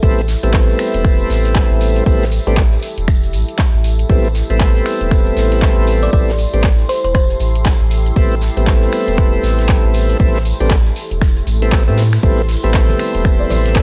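Swung 16ths at 118 BPM in 4/4 drive this smooth, late-night deep house excerpt in A minor, where an overdriven electronic kick and a round, triangle-toned analog bass with tube saturation sit up front beside slow-rotary tonewheel organ stabs with tape echo. A moody, detuned ambient pad holds an Am7 in the background. A punchy analog drum machine adds finger snaps, handclaps, hi-hat and ride, while an airy studio kit of hi-hat, snare and tambourine and a separate jingly tambourine sit low. A tine-like FM thumb-piano pluck with cassette-tape coloring and tape echo sings a short melody around 6.0 s, and a faint electronic downlifter and swell arrives near 11.4 s. At 12.2 s a soft, very quiet pluck arpeggio and shimmering string-machine violins enter, with hard-hand congas following just before the close, all within a dry, gritty small-room sound.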